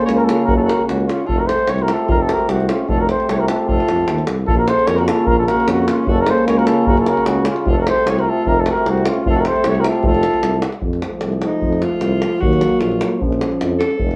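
Fiery and virtuosic, this swung 2/4 Balkan brass band piece puts an up-front flugelhorn with light vibrato on the melody over a smooth-topped alto saxophone second line, a clear, distant euphonium and a mellow euphonium in the background, a close-miked tuba bass and deep davul, the band playing live together in one room with wet studio reverb, until the flugelhorn stops at 10.6 seconds and the saxophone takes a solo from 10.8 seconds.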